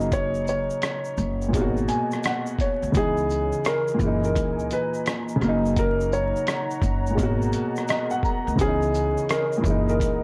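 Swung sixteenths carry this hazy, reflective lo-fi hip hop excerpt. A muffled, thumpy sampler-style drum kit with hi-hat, rim click and shaker joins a grainy tube shaker and a woody pizzicato upright bass beneath a slightly detuned, cassette-tinged upright piano, while a soft felt-muted upright piano sings the intimate melody with audible action noise, and a dark, chorused analog pad enters at 3.5 s, the whole recording gritty with light reverb and vinyl crackle.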